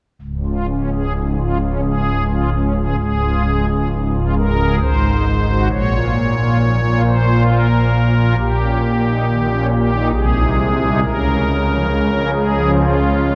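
Bathed in a long, wet cathedral reverb within a dark, warm production, this excerpt of a serene, reverent classical chorale features a solo pipe organ on soft, shimmering string celeste stops, placed up front and spanning Db1 to Db5. At a slow 67 BPM in 3/4 with a rubato feel, the romantic voicing moves through Db major, reaching Bbm at 5.7 seconds before settling back on Db at 11.0 seconds.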